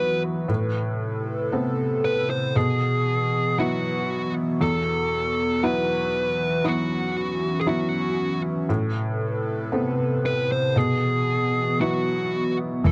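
Pop at a slow 58 BPM in E major, hopeful and tender, this excerpt opens with a compressed fuzz lead guitar carrying the melody over a felt-muted upright piano, whose soft, intimate tone brings audible action noise, and an airy, breathy pad with chorus and phaser sustaining chords through Amadd9, Bsus4 and Esus2. The close, dry 1970s-style studio sound keeps the guitar and piano up front in a moderate booth ambience. At 12.8 seconds a fingerpicked steel-string acoustic guitar enters in the background with arpeggios, joined by a round, punchy hollow-body electric bass.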